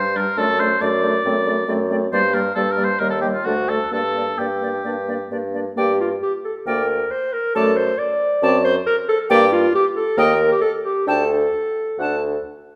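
Heard through a wet recital hall reverb with a 1.6-second tail, this restless, dramatic classical-period movement for wind quintet in G minor runs quickly at 135 BPM in 4/4 with a rubato feel: an airy, crisp silver concert flute with vibrato carries the melody over a roomy, up-front oboe second line, a mellow clarinet and a warm, lightly vibrato-tinged French horn accompany, and a soft-attacked, distant bassoon holds the bass, while the harmony moves from D/F# and D7/F# through G minor and E-flat to D in a passage cut from a longer piece.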